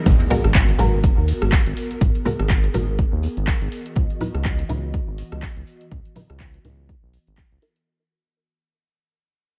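The overdriven electronic kick drum stands out most, deep and up front, driving this smooth deep house excerpt at 123 BPM in 4/4 with a 57% swing on the sixteenths, in G# minor and tuned to A4 = 435 Hz. Beneath it, a round analog bass, dark and sustained with ring modulation, pumps against the kick, while an overdriven drum kit adds handclaps, rim clicks and metallic hi-hats, and low-tuned acoustic congas sit in the background in a small room sound. A muted, detuned dub chord stab plucks short chords through a phaser and dub echo, and an airy, breathy pad with a noise layer and chorus holds mellow sustained chords in the background, both pumping with the sidechain. Filter sweeps run across the stab and the pad as the harmony moves from G#m9 to C#m11 at 3.7 seconds. A very quiet electronic impact sounds in the opening two seconds, the mix stays dry, and the whole passage, cut from a longer piece, fades out over its roughly eight seconds.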